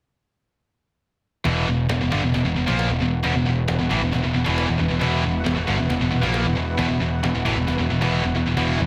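Hard rock with a driving, aggressive mood, cut from a longer piece, where two high-gain distorted guitars enter at 1.4 seconds with a bright, picked riff and a third joins at 1.5 seconds, one up front and two in the background, one of them double-tracked. A growly, punchy picked electric bass sits up front beneath them, while a silky, detuned analog string pad holds sustained chords with ensemble chorus and vibrato, and a woody, distant cajon plays very quietly in a large room, its kick and snare dropping out at 8.1 seconds. The mix carries light reverb and a heavily compressed radio sound.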